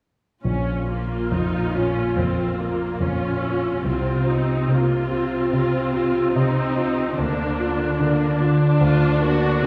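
Moving and sorrowful, this cinematic fragment unfolds at 72 BPM in 4/4 with a rubato feel, passing from Bbm through Fsus4/C to Bb/D. A polished, present grand piano sits up front beside a lush, expressive viola section rich with vibrato and portamento, while a woody cello section carries the bass from the background, all three playing together from 0.4 to 9.7 s. The music is heard from further back on a scoring stage, bathed in a long, wet reverb.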